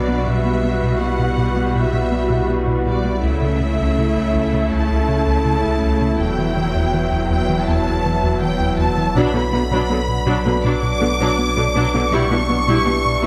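A rubbery, hollow square-wave bass riff bounces through this brooding, tense cinematic excerpt at 81 BPM in E dorian, entering at 0.1 seconds beneath a distant, intense violin section carrying the melody. Lush bowed violas and cellos add rich vibrato support, while a punchy sub bass with a pitch-drop attack anchors the low end and an evolving analog drone with chorus holds sustained chords. The harmony moves from Emadd9/B through A/C# and Bm before settling on Em/B, all set in a moderate scoring-stage reverb.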